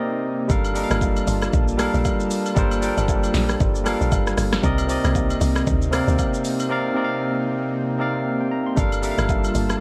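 Amapiano in G minor at 116 BPM, this hypnotic, deep excerpt moves with a swung sixteenth-note feel over a brief passage cut from a longer piece. A bright, barky tine electric piano sits up front from the very start, alongside an airy, breathy pad whose detuned, chorused chords pump against the sidechain. At 0.5 seconds the drums and a woody, punchy log drum bass arrive together, the kit combining a deep kick, punchy snare, hi-hat, rim click and shaker with a layered, electronic character re-recorded in a small room. Agogo bells and woodblock enter at 0.6 seconds, sitting close and dry in the background with egg shaker and group handclap touches. The harmony rests on Gm9, moves to Cm9 at 4.6 seconds and returns to Gm9, with a break before the final chord, all under light reverb and a layer of vinyl crackle.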